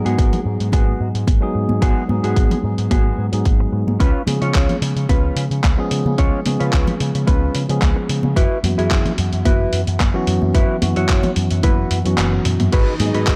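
Sensual and groovy, this nu-disco excerpt moves at 110 BPM in G# minor with a light 16th-note swing, cycling from G#m7 through C#7 and F#7sus4 before returning to G#m7. A punchy, layered electronic kick sits at the front of the mix, joined by a gritty, overdriven soul sampler-style kit with hi-hat, handclaps, toms and crash cymbal that sounds re-recorded in a small room, while soft-handed congas murmur in the background. A dark, round picked bass shaped by an envelope filter carries the low end, and a clean tine electric piano played through a combo amp comps underneath with sidechain pumping, a low-pass filter and delay. A mellow, fingered electric guitar riff floats over the top, coloured by analog chorus and delay. Near the end the kick drops out from 12.2 to 12.7 seconds around a drum fill at 12.5, and a lush, vintage string machine ensemble with a slow attack and ensemble chorus swells in at 12.7 seconds, all bathed in a light reverb.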